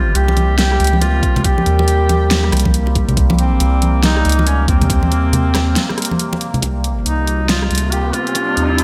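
A dreamy, reverb-soaked mix in a lush hall sets a dark, heavy mood for this deep dubstep excerpt, cut from a longer piece at 139 BPM in C phrygian, with a swung half-time feel. A soft, round sub bass sits up front from the start, under a sustained drone whose resonant, moving overtones carry chorus and built-in reverb. Above them a clear, distant duduk plays a folk-style solo melody with light vibrato and scooped notes, trailed by dub echo. Overdriven electronic drums bring a huge snare, hi-hat and rim click, joined at 1.2 seconds by a knocking, high-pass-filtered kick, while hard-handed congas with dub echo sit close and dry in the background until 6.6 seconds. After a break from 5.8 seconds, a build-up begins, and an electronic riser enters at 7.3 seconds to lift the closing bars.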